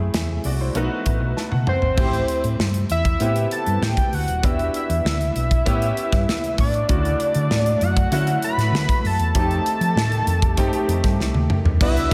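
A clear baby grand piano with ensemble chorus and slapback echo, a dark, round hollow-body electric bass and a punchy, up-front studio drum kit open this urban, nocturnal slice of polished 1980s jazz-funk pop at 98 BPM, where a piano fill and a drum fill lead into rich chords such as Am9 and Dmaj7. A fat analog lead with chorus, vibrato and a filter sweep carries the melody from 1.7 s, a very quiet, shimmering pulse-width pad adds sustained chords from 6.9 s, and a mellow horn section slips in briefly in the background at 11.8 s. A moderate concert hall reverb lends the recording a big arena sound.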